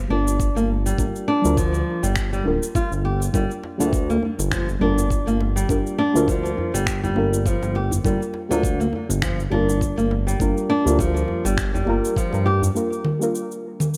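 Organic downtempo in G minor at 102 BPM, this meditative excerpt sits on a single Gm7 chord with a gentle 16th-note swing and light reverb. A deep, warbling chord stab with a vintage, dark tone carries chorus, delay and sidechain pumping, while a filter sweep runs across it until 12.8 seconds. Beneath it, a smooth, nasal synth bass with vibrato sits up front and pumps with the sidechain, dropping out at 12.7 seconds. Fingerpicked flamenco guitar arpeggios, acoustic and up front with audible finger squeak and delay, thread through the middle register. An electronic knocking kick and a produced kit of cabasa, finger snaps and congas, both re-recorded in a large room, drive the groove, and a very quiet, close and dry djembe played with soft hands joins at 3.3 seconds. Near the end, the chord stab and the cabasa, snaps and congas carry on alone into a brief closing section that runs to 14.0 seconds.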